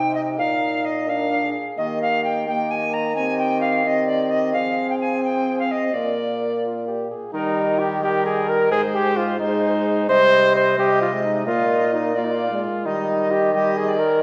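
Courtly and stately, this short cut from a longer renaissance-style consort dance in Eb major moves at 87 BPM in a straight 6/8, with a dark, close-miked cornet carrying the melody over a bright, airy alto recorder second line with a soft attack and chiff, a bright trombone accompaniment with vibrato and a mellow, punchy bassoon bass, all heard from further back in a wet recital hall as the same phrase plays twice, closing on a Bbsus4 to Bb to Eb cadence at 12.9 seconds.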